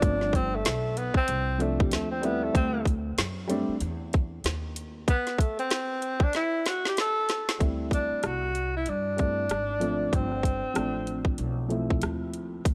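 A swung 95 BPM groove in 4/4 from a tight, up-front electronic drum kit of kick, woody snare, rim click and metallic hi-hat drives this relaxed, warm jazz-hop excerpt, with a pizzicato steel-string upright bass underneath. A breathy tenor saxophone carries the melody as a solo with subtone, vibrato and scooped notes, while a dark, mellow baby grand piano with audible action noise accompanies it, dropping out at 3.7 seconds and returning at 7.6 seconds. A drum fill at 6.3 seconds leads into the second section, and light small-room reverb lends an intimate air.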